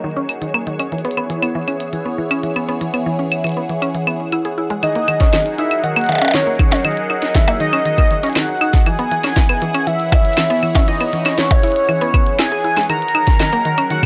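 A straight 4/4 IDM groove at 119 BPM in F# mixolydian brings in a glitchy drum kit of tiny overdriven snare, clicky hats, claves and percussion blips at 0.3 seconds, joined by a deep electronic kick from 5.2 seconds, both up front with a small-room feel. From the very start, a swirling, detuned sawtooth pad holds phased, chorused chords beneath woody, round mallet-like FM plucks that spin arpeggios through tape echo, while a faint flickering, grainy texture hovers above until 4.8 seconds. At that point a velvety, dark synth lead takes the melody with chorus, tremolo and tape echo, giving this playful, wistful passage from a longer piece a gritty, cassette-tinged hardware sound.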